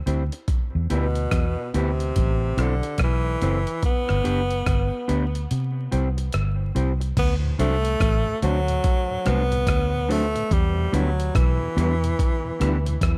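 Laid-back and serious, this roots reggae excerpt at 72 BPM with a swung 16th feel carries a clear, close-miked tenor saxophone melody with tape echo over a dark, foam-muted fingered bass and a gritty, compressed sampler-style breakbeat kit whose thumpy kick drops out from 5.5 to 7.2 seconds, alongside a mellow, clean electric guitar with its own tape echo and a very quiet, flute-like tonewheel organ with key click that enters at 7.4 seconds, all over a bed of vinyl crackle as the chords move from Em through Am, G and C to D7 and Em7.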